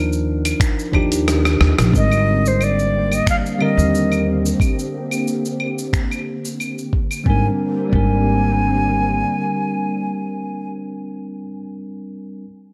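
A bell-like tine electric piano with analog delay and a woody pizzicato upright bass open this relaxed sunset chillout excerpt, soon joined by a gritty, compressed sampler-style soul kit of claves, finger snaps, hi-hat, rim click and shaker, and by a thumpy electronic kick up front that drops out for a drum fill at 1.3 seconds. An airy, reedy concert flute with vibrato and its own analog delay carries the melody from 2.0 seconds, after the harmony has moved from Ebmaj9 to Abmaj9#11, while a silky, warbling string machine with ensemble chorus enters to hold sustained chords through a filter sweep. The echo-heavy mix sits in a moderate echo chamber, and the electric piano rings on alone until 12.5 seconds.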